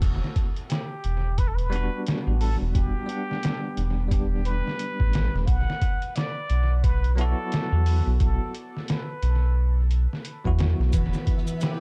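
Trip hop at 88 BPM in E minor, dark and smoky, opens on a round, deep analog bass with tube saturation and a muffled, pitched-down sampler drum kit with overdriven 12-bit grit and tape echo, as a breathy plunger-muted trumpet solo enters at 0.7 seconds and a bell-like tine electric piano with tremolo joins at 1.7 seconds, while the chords move from Em7 to Bsus4 before a biting violin section, ringing fingerpicked harp and background maracas arrive on Em at 10.9 seconds, with a flickering granular texture surfacing in this echo-heavy fragment.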